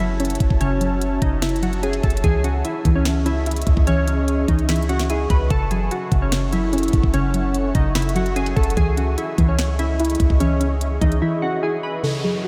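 A dreamy, reverb-soaked mix opens this melancholic, dark trap excerpt at 147 BPM in a half-time feel, where glassy, wave-folded digital keys carry the melody over a soft, round pluck and an ethereal, detuned pad moving between F#m7 and C#madd9. Up front, an electronic trap kit with a knocking kick, sharp snare and crisp hats drives alongside a deep, boomy 808-style bass until both drop out at 11.2 seconds for a brief break. A downlifter sweeps in at 12.0 seconds as the keys, pluck and pad ring on.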